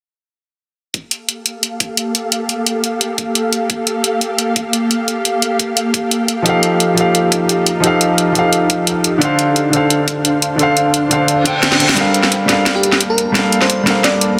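Cracking snare and bright hats open this lush, rolling liquid drum and bass excerpt over a knocking electronic kick, joined almost at once by an ethereal, detuned pad that pumps under sidechain with ensemble chorus, before an intimate grand piano with audible action noise and dub echo enters at 6.4 s, an electronic reverse cymbal sounds in the background at 11.4 s ahead of a drum fill, and a sparkling, bell-like FM electric piano carries the melody from 12.8 s through the build-up, the whole mix sitting in a roomy digital reverb under a dense, heavily limited master.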